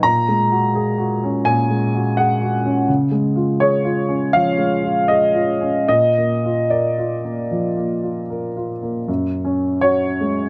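Neoclassical minimalist piano in F# major, peaceful and hopeful, drifts in a rubato 72-85 BPM in 4/4 as a solo baby grand with a warm, worn tone and long sustain sits up front in light reverb, spanning F#2 to A#5 and moving from F#add9/A# through C# and A# before settling on F#sus2 at 9.1 seconds in this short cut from a longer piece.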